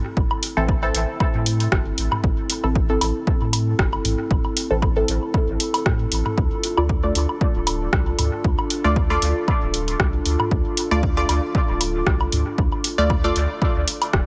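Dub techno with a deep, hypnotic mood, this excerpt moves at a steady 116 BPM in 4/4 with a light swing on the sixteenths, shifting from Am to Dm at 6.4 seconds. A dark, moody analog pad opens at 0.0 seconds, its detuned, wave-folded tones with a sub octave and slow attack sustaining chords under a subtle chorus and sidechain pumping. A soft, round dub sub bass enters almost at once, pumping along, while a punchy, tape-warm electronic kick and an up-front analog drum machine supply hi-hat and rim click, the latter trailing dub echo. Electronic woodblock and toms add analog colour with sidechain pumping and their own dub echo. A muted, detuned chord stab arrives at 0.6 seconds, its fast-attack, decaying hits filtered and passed through a phaser and dub echo, before it drops out at 13.4 seconds, all set in light reverb.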